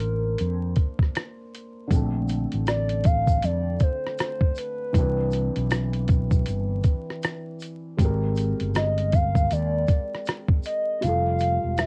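Lo-fi hip hop in Bb major at 79 BPM with a 16th-note swing, dreamy and cosy, cut from a longer piece and coloured by a home cassette recording and vinyl crackle in a dry room. A hollow, woody synth lead with chorus, vibrato and a low-pass filter carries the melody up front over a felt-muted upright piano that sounds intimate and dark, its action noise audible through a cassette tape treatment, while a round fretless bass with analog chorus sits forward beside a gritty, compressed sampler-style kit of hi-hat, thumpy kick and rim click. A grainy tube shaker joins in the background at 1.9 seconds as the chords move through Bbmaj9, Cmaj9, Abmaj9 and Fmaj9, and the kick drops out at 11.0 seconds.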